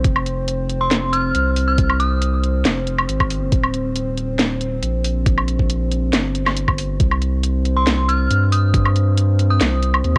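A cassette-recorded haze with light reverb frames this cavernous, meditative deep dubstep cut in C minor, where a thick, saturated sub bass and an overdriven, knocking electronic kick sit up front with a garage kit's cracking snare, warm hats and woodblock in a 138 BPM half-time groove, while a moody, detuned square-and-sawtooth analog pad sustains chords from Fm through Eb to Cm and an eerie, inharmonic FM bell with dub echo appears from 0.8 to 2.4 seconds and again from 7.8 seconds.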